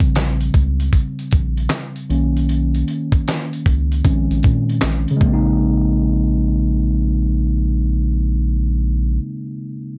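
Lo-fi hip hop with a hazy, reflective mood and a swung feel, cut from a longer piece, where a mellow tine electric piano takes a solo over a round, deep analog bass and a gritty, compressed soul sampler-style kit of thumpy kick, fat snare, hi-hat and handclaps that drops out at 5.4 seconds, the whole mix dark with light reverb.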